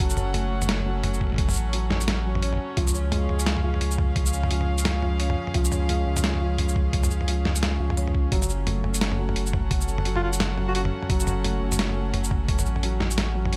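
This short cinematic, spacious excerpt has a dry overall sound, set in half-time drum and bass with a swung sixteenth-note feel. Up front, a gritty, pitched-down, sampler-style kit of hi-hat, shaker, toms and a medium-tuned snare carries studio reverb. Beneath it sits a compressed, thumpy, tape-warm electronic kick that drops out at 12.6 seconds. A deep, thick triangle sub bass, saturated and quick in attack, holds sustained low notes prominently in the mix. Behind these, a rich, earthy chamber string ensemble bows sustained chords with light vibrato and a smooth top, pumping from sidechain. Meanwhile a soft, felt-muted upright piano, dark and intimate with audible action noise, plays arpeggios through digital delay. At 10.2 seconds a clear, classical-style alto saxophone surfaces briefly in the background, also carried by digital delay.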